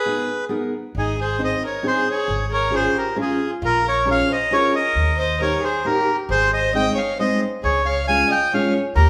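A reedy, bright bandoneon carries the melody up front in this musette waltz, set in Ab major at 135 BPM in a straight 3/4. Beside it, a single bowed violin with a gut-string, period-style tone plays a second line. A fingerpicked steel-string acoustic guitar with a dark, auditorium-like body supplies the accompaniment. After a brief opening break, a woody upright bass enters at 0.9 s, played pizzicato on steel strings and sitting up front. The mood is bittersweet and whirling, with the chords moving through Ab, Dbmaj7/Ab, Bbm7 and Eb before returning to Ab and Db. The band plays live in one room, wrapped in a wet large-studio reverb, in this short cut from a longer piece.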